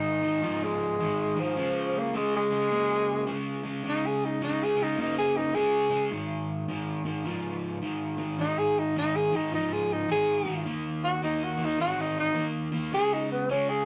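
This blues excerpt has a gritty, rollicking mood, moving at 106 BPM in 4/4 with a swung eighth-note feel. A breathy tenor saxophone carries the melody as a solo from 0.0 to 13.9 seconds, played up front in a jazz style with soft attacks, vibrato and scooped notes that give it a whispered, intimate voice. Beneath it, an overdriven semi-hollow electric guitar plays a picked riff in a lower register, also up front, its hollow-body tone warm and crunchy. The harmony moves through Ab5, Db5, Ab5 again, Eb5 and back to Db5. The sound is that of a rough rehearsal-room take, with tube saturation and a short, wet booth ambience that keep the whole performance close and raw.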